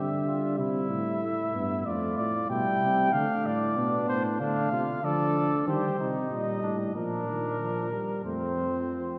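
Driving yet contemplative, this classical canzona for brass ensemble moves at 94 BPM in a straight 4/4, heard in a short 9.2-second cut from a longer piece. A mellow cornet carries the melody up front with light vibrato and a soft attack, while a warm flugelhorn adds a second line, a dark trombone fills the accompaniment, and a warm tuba anchors the bass with vibrato, also placed forward. A wet church reverb with a 2.7-second decay surrounds the group as the harmony passes from C through Am, Dm and Cm before resting on F.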